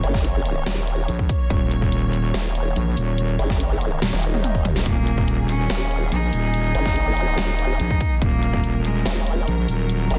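Heavy wobble dubstep in Eb minor at 143 BPM with a half-time feel, this menacing fragment sets a dark, woody string section's sustained, sidechain-pumped chords under two up-front, overdriven wobble basses with chorus, one formant-swept and detuned, the other resonant and square-edged, entering at 1.1 seconds, while a dubstep kit with a huge snare and toms pairs with a punchy, overdriven electronic kick, a drum fill and faint electronic swell lead to 4.9 seconds, where a single nasal, intense cello enters with tape echo, all within a dense, heavily limited modern master and digital ambience.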